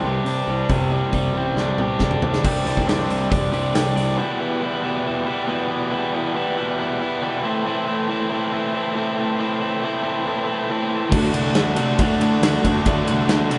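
Classic rock with a swaggering, brooding feel, this excerpt opens in half time on Csus2 with a bright, compressed overdriven guitar riff up front, a crunchy guitar riff in the background, round fuzz bass and a punchy big rock drum kit coming in at 0.3 seconds with a fill from 1.6 to 2.4 seconds, then drops to the lead guitar and a very quiet, fat tonewheel organ on a fast rotary speaker through Em and Am from 4.2 seconds before the full band returns on D at 11.1 seconds.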